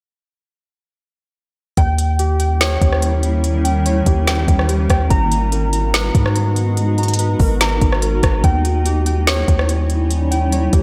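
Ethereal and melancholic, this half-time cloud-rap excerpt at 144 BPM, tuned to A4 = 436 Hz, opens at 1.8 seconds with a smooth R&B drum kit of soft kick, woody snare, rim click and smooth hats up front, a deep, long sine 808-style bass, and warbling, nostalgic lo-fi synth keys arpeggiating through chorus, low-pass filter and digital delay, joined at 2.5 seconds by a blurred, evolving granular cloud pad whose sustained chords pump under sidechain, all moving between D#7b9 and G#m9 in a light reverb.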